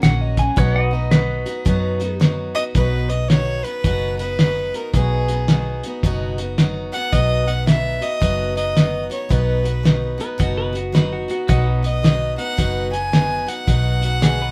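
A twangy, bright electric guitar opens this easygoing, down-home honky-tonk and classic country excerpt over a picked dreadnought acoustic guitar, a round, foam-muted vintage bass, a cloth-damped, thuddy drum kit with a fat snare, and soft pedal steel chords in the background, before a rich, earthy fiddle with light vibrato takes up the swung melody at 2.5 seconds and the electric guitar returns at 10.2 seconds, all in a light reverb.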